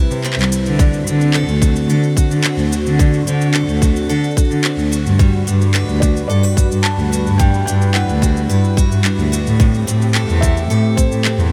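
Set in a small, lightly reverberant room, this playful, warm folktronica piece moves at 109 BPM in G major over Cmaj7, D7, Gmaj7 and Am7 chords, with a chorused analog pad sustaining chords in the background, bright, woody steel-string acoustic guitar arpeggios touched with delay, and a rich bowed cello carrying the bass up front with smooth vibrato, while overdriven electronic shaker and handclaps are joined at 0.8 s by a tight, overdriven electronic kick up front, and a mellow felt-muted upright piano enters with a soft, delayed melody at 6.0 s.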